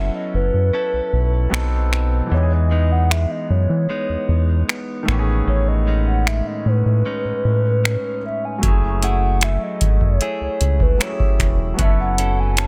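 Contemporary R&B with a longing, late-night mood, built on a hollow, woody synth lead carrying the melody through chorus and delay over a clear concert grand piano and a clean, direct-recorded electric guitar playing arpeggios. A round, deep analog bass sits up front, and at 1.5 seconds a booming analog drum machine enters with a deep kick, metallic hi-hats, finger snaps and a softly clipped snare. The dry, dense mix is heavily limited, and the piano's audible action noise lends an intimate touch.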